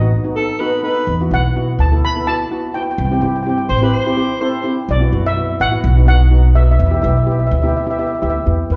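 A thumpy, woody upright bass sits up front in this dramatic, tense calypso excerpt, under a dark, mellow lead steel pan melody and a shimmering double-seconds pan accompaniment, while a breathy, whispered alto saxophone adds a second line from 0.4 to 4.7 seconds, all set back in a wet recital-hall reverb.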